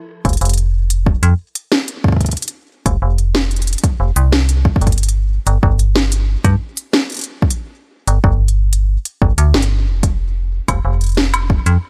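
A straight 4/4 pulse at 92 BPM drives this intricate, glitchy IDM fragment, cut from a longer piece, with a deep, overdriven electronic kick and an organic-sounding electronic kit of woody snare, smooth hi-hats and woodblock, also overdriven, sitting up front from 0.2 seconds. A metallic FM bass with a fast attack and decaying notes, thickened by tube saturation, moves between F1 and G2 alongside them. The dry sound has little reverb.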